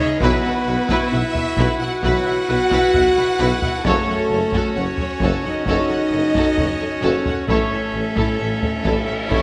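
Lush bowed violin sections carrying a melody and a second line, with violas and cellos beneath, open this epic, dramatic orchestral film-score excerpt alongside a dark, tight French horn section and a hollow clarinet-stop pipe organ holding chords; at 0.2 seconds distant trombones, roomy trumpet stabs, double basses, a very quiet tuba and compressed, saturated hard-stick taiko drums join in, and a huge cymbal swell arrives in the background at 8.3 seconds, the whole heard in a wet scoring-stage reverb.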